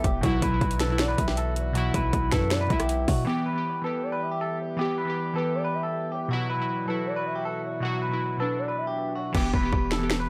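Hip hop trap at 158 BPM in a menacing, eerie half-time E minor groove, where a bright, twangy clean electric guitar carries the melody over glassy, warbling digital keys with chorus, a smooth portamento lead glides through a mellow second line with chorus and analog delay, and a distant brass ensemble holds sustained chords in the background, while a boomy 808-style bass and an up-front trap kit of hard-clipped kick, sharp snare, rim click, finger snaps, crash and metallic hats drop out at 3.3 and 3.2 seconds respectively and return at 9.3 seconds with the hi-hats muted, all over Bsus4 and Em chords in a dry, gritty recording.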